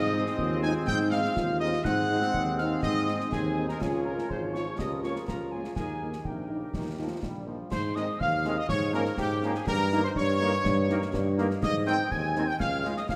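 Rousing and spirited, this military-style wind band march in Ab major strides along at 123 BPM in 2/4, with a mellow trumpet section carrying the melody over a warm, up-front tuba bass. A pure, tongued piccolo, a distant woodwind section and a dark euphonium, which drops out at 7.4 seconds, add second lines, while a clear trombone section holds sustained chords and a very quiet French horn section fills in the accompaniment. Close, dry concert snare, bass drum and clash cymbals with dark cymbal tone join at 0.3 seconds, and a wet concert hall reverb surrounds the band.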